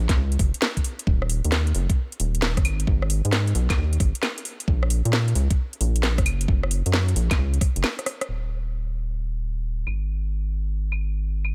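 A dark, rubbery square-wave bass with a hollow, resonant pluck opens this soulful, skippy two-step UK garage excerpt at 133 BPM, with 16ths swung at 66%. A knocking, tape-warm electronic kick and a garage kit of cracking snare, metallic low-pass-filtered hats, claves and rim clicks sit up front in a dry mix. The kick drops out at 7.7 seconds for a brief break and a drum fill, and the bass and kit carry on into a new section from 8.3 seconds.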